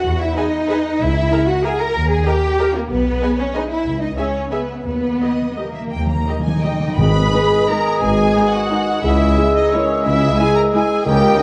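A rubato 3/4 waltz lilts between 159 and 204 BPM in this sweeping, bittersweet orchestral ballroom excerpt in G# minor, where a focused, lush violin section carries the melody over up-front cellos, close double basses, a second violin line with portamento and a distant viola section in the background. Timpani with medium mallets add a close, dry fill from 4.9 seconds, and at 7.0 seconds the winds and brass arrive: an airy, hollow flute and a very quiet, roomy clarinet on second lines, a bassoon, punchy tuba and vintage-sounding trombones holding chords, joined by mellow French horns from 7.3 seconds. The dark production sits in the wet reverb of a scoring stage.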